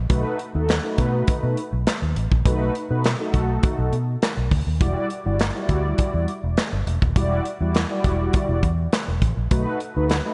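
A dark, foam-muted fingered electric bass sits up front in this slick, funky early-eighties boogie funk excerpt in E minor at 102 BPM, moving between B7 and Em9. Mellow synth brass supplies sustained, detuned sawtooth tones with chorus and vibrato, while a modern acoustic drum kit drives with a punchy kick, medium-tuned snare, hi-hat and handclaps. Light studio reverb gives the cut a polished room sound with a soft top end.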